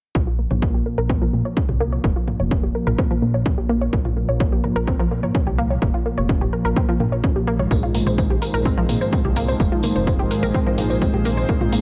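An overdriven, up-front electronic kick, a fat detuned sawtooth bass and a bright, chorused analog pluck arpeggio open this dark, melancholic melodic techno excerpt together, with sidechain pumping on the bass and pluck and filter sweeps running through both. Brassy pad stabs with chorus, vibrato and delay arrive almost at once, alongside a tape-warm analog drum machine's pumping hi-hats and toms in the background, while a very quiet phased pulse-width drone settles underneath from 1.5 seconds. A jingly tambourine enters at 7.7 seconds as the harmony shifts, and at 8.0 seconds a mellow, warbling wavetable pad adds sustained chords with vintage 12-bit grit, all within a light digital ambience.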